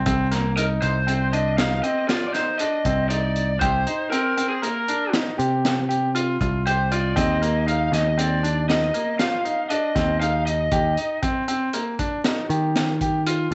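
Progressive instrumental band music in an uneven 7/4 meter, this tense, brooding excerpt moves at 118 BPM with a straight feel in C minor, cut from a longer piece. A picked electric bass opens at 0.0 seconds, punchy and up front, joined almost at once by a bright grand piano playing arpeggios with long sustain and audible action noise that gives it an intimate, brilliant presence. A crunchy breakbeat drum kit of hi-hat, kick and snare sits further back, its dark, gritty, saturated tone pairing a high-tuned snare with a punchy kick. At 0.6 seconds a lead guitar through a small cranked amp takes the melody, overdriven and lo-fi, carrying on until 11.2 seconds. The harmony rests on C minor before shifting to Eb at 7.2 seconds. A wet spring reverb colours the sound, and the top end stays rolled off.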